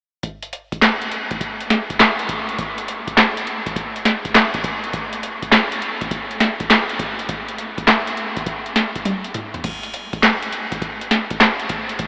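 A swung sixteenth-note groove in 4/4 drives this short R&B excerpt, cut from a longer piece, with a flirty, bouncy mood. The only part is a booming analog drum machine, sitting up front from 0.2 to 12.1 seconds and built from kick, snare, handclaps, hi-hat, toms and crash cymbal. Its deep kick and crisp snare carry a tape-warm character, while the metallic hats, snare and clap get a short room of their own. A drum fill at 9.1 seconds leads into a new section at 9.6 seconds. The whole recording is bathed in a huge, wet ambient reverb and filtered through an AM radio sound, giving the beat a distant, broadcast quality.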